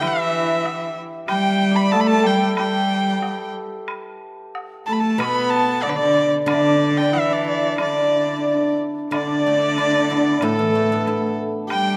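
An excerpt of graceful, festive Chinese traditional chamber music in D zhi mode, at 93 BPM in 2/4 with a rubato feel. From the start, a single bowed erhu carries the melody up front, its earthy, rich tone shaped by light vibrato and portamento. Beneath it, a bright, focused cello played by one player adds a second line with vibrato. A large bamboo dizi, reedy with a buzzing membrane and a soft attack, sits in the background, and a shimmering, ringing hammered dulcimer plays another second line, with a woodblock far back in the mix. At 5.2 seconds a silvery guzheng played with fingerpicks enters as accompaniment, and the music moves into a new section at 9.1 seconds, all set in a moderate stage reverb captured with close, detailed microphones.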